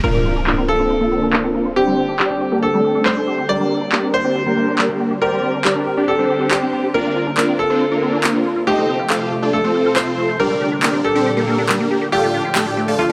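Uplifting trance, soaring and euphoric, this piece is cut from a longer track and moves in a straight pulse under a huge, detuned supersaw carrying the melody up front, its bright sawtooth chords shaped by a low-pass filter sweep, a moving notch and dub echo. A brilliant concert grand piano plays a second line just as close to the listener, its worn, intimate tone marked by audible action noise. Beneath them, a thick, nasal unison pad holds sustained chords with a soft attack, long release and chorus, while a squelchy, resonant acid bass runs smooth arpeggios through its own filter sweep, analog chorus and dub echo. The layered electronic drum kit drives with crash cymbal and handclaps, with low-pass filtering on the hats, snare and cymbals and a small room ambience, and it drops out at 12.6 s. An electronic impact opens the passage, a swell arrives at 13.1 s, and a huge ambient reverb bathes the progression as it moves from Bbadd9 through Csus2, Gm and F to Dm.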